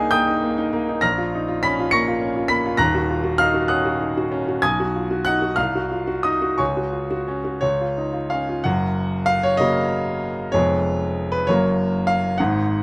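A rubato 6/8 sways through this passionate, brooding romantic character piece for solo grand piano, its clear, natural, up-front tone spanning from the deep bass to the high treble in light reverb, as a darker opening gives way at 8.7 seconds to a second section that settles onto the home chord before the excerpt is cut from the longer piece at 12.8 seconds.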